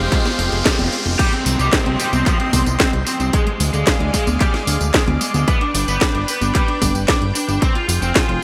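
A lush, detuned sawtooth pad with chorus and phaser opens this nostalgic, bittersweet italo disco excerpt at 112 BPM in C harmonic minor, alongside a fat analog bass up front, a riser in the background and brief dark, brassy synth stabs soaked in delay that end at 0.9 s. Punchy electronic kick and a house kit with cracking snare, congas, handclaps, hi-hat, tambourine and crash cymbal come in at 0.1 s, sounding tape-warm and re-recorded in a small room. At 1.2 s an overdriven, picked electric lead guitar through a small cranked amp takes the melody with digital delay over a Cm, Ddim, G and Fmadd9 progression, all within a bright 1980s-style production bathed in plate reverb.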